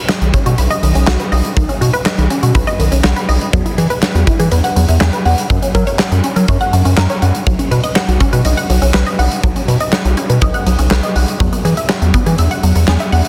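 Synth-pop with a nostalgic, upbeat mood, this short cut from a longer piece runs in a straight four-four pulse over chords moving from Badd9 through Eadd9 and F# and back again. A resonant blip pluck spins out arpeggios from the opening moment, its juicy, squelchy sawtooth tone detuned and shaped by a filter pluck with a moving notch, fast attack and short decay, then dressed in chorus, phaser, digital delay and shimmer reverb. A huge arena drum kit sits up front with a punchy kick, a medium-tuned snare, hi-hat and handclaps, its acoustic sound carrying a pumping hall-like room. Underneath, a round analog bass blends square and sine tones into a deep, mellow, sustained line with a quick filtered attack, also placed up front. The whole mix sits in a moderate scoring-stage reverb with a touch of small-room ambience and comes across as a dense, heavily limited modern master.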